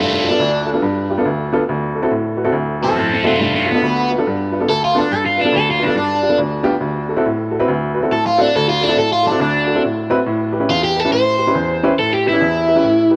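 An overdriven semi-hollow electric guitar with a phaser plays a soulful, swaggering blues solo at 140 BPM with a swung eighth-note feel, while a woody upright piano with short sustain accompanies up front over G9, D9 and A9 chords, both set in a moderate plate reverb through this 13-second fragment of a longer piece.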